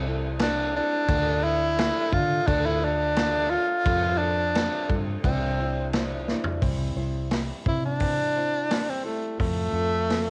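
A dry home cassette recording of warm, jangly folk rock with a heartland lean, cut from a longer piece. A boxy, woody ladder-braced acoustic guitar with old strings is picked beneath a round, foam-muted fingered electric bass, and at 0.4 seconds a vintage drum kit enters up front with a punchy kick and dark cymbals, alongside a clear tenor saxophone. The saxophone carries the melody in a pop style with vibrato, and after a drum fill at 6.3 seconds it takes a solo from 6.6 seconds as the chords move from C6 and Dm toward C and F.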